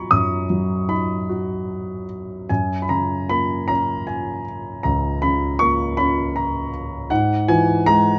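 A dark, mellow grand piano, intimate and up front with audible action noise, plays a reflective, lyrical classical solo in a rubato 3/4, ranging from the deep bass to the high treble over chords of B, F# and, at 7.1 seconds, E/G#, captured by close, detailed microphones with light reverb in this brief cut from a longer piece.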